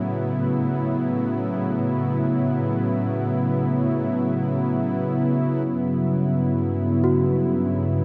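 Ambient music with a luminous, weightless mood, this short fragment is cut from a longer piece. A warm analog pad sits up front throughout, its detuned sawtooth tone smoothed by a slow attack and a chorus effect as it holds sustained chords. A small celesta adds delicate, bell-like arpeggios struck with hard felt hammers, heard only in the opening moment and again from 7.0 s. Deep in the background, a muted symphonic cello section bows a dark, veiled bass note with lush vibrato before it stops at 5.6 s. The harmony moves from Aadd9 to G at 5.7 s, and a huge ambient reverb and the soft grain of cassette tape wrap the sound in a hazy glow.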